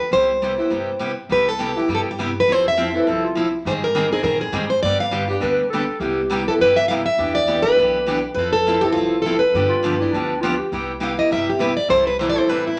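A fast swung 4/4 at 204 BPM drives this playful, lively stretch of jazz manouche in C major, with a woody, thumpy pizzicato upright bass on gut strings and a bright, boxy parlour steel-string guitar picking the accompaniment through chords such as Cmaj7, Abmaj7 and G7. Up front, a plugged-in steel-string acoustic guitar carries the picked melody with a concert tone and audible finger squeak, while a mellow jazz clarinet adds a second line from 3.0 s and again near 9.7 s, using subtone, vibrato and scooped notes. A steel-string acoustic guitar takes a solo from 10.7 s, and the cut sits in a wet studio reverb.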